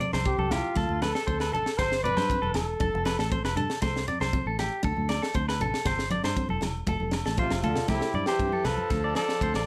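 A twangy, clean electric guitar with slapback echo spins bright arpeggios over a full-bodied picked acoustic guitar, and a tight, dry funk kit, round foam-muted fingered bass, background congas and vintage agogo bells quickly join to set a joyful, carefree highlife groove at 118 BPM in C major. A dark trumpet with soft, scooped notes and vibrato takes the melody from 0.3 seconds, drops out, then returns at 7.4 seconds alongside a gritty, raspy tenor saxophone playing a second line in the background. A drum fill at 7.5 seconds leads into a new section, all under a moderate studio reverb in this cut from a longer piece.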